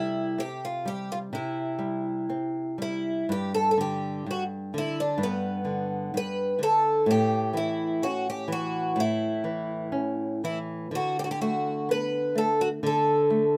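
A moderate studio reverb surrounds this tender, nostalgic fado-style ballad excerpt at 63 BPM in a rubato 2/4, where an up-front, shimmering, octave-doubled twelve-string acoustic guitar with woody old strings picks the melody over a small, boxy, fingerpicked nylon-string guitar accompaniment, shifting from C major to G major at 3.3 s as the chords move through C, G, A and D5.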